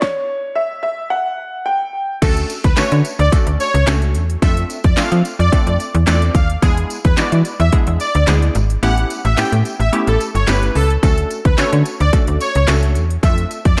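Dance-pop with a summery, carefree mood, this excerpt opens on a build-up where a clear, intimate concert grand piano with analog delay carries the melody over a punchy house drum kit. At 2.2 seconds the drop arrives: a smooth, detuned supersaw takes the lead with delay and sidechain pumping, while crisp wavetable chord stabs with phaser, a snappy, metallic FM bass and a jingly tambourine in the background join the cracking snare and handclaps, with the kick muted from 8.8 to 11.0 seconds. The dreamy mix is soaked in lush hall reverb as the chords move through Dmaj7, F6, E7 and A9.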